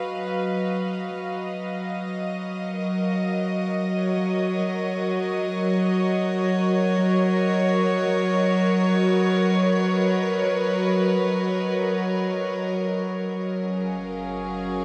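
A chamber string section opens this ambient excerpt, holding sustained chords up front with a rich, reedy, gut-string tone in period style, moving through D#madd9/F#, F#6 and Bmaj9/F# in free time and F# major. The mood is weightless and serene, and the whole mix is soaked in a huge, dreamy reverb with a 7.5-second tail. At 3.9 seconds a very quiet, organ-like drone enters beneath the strings, calm and evolving, its detuned unison sound softened by a slow attack, long release, ensemble chorus and its own reverb. Near the close, at 13.2 seconds, the harmony settles onto F#maj9 as a round, dark analog bass joins deep in the background on a low F#. The passage is cut from a longer piece and runs to 14.8 seconds.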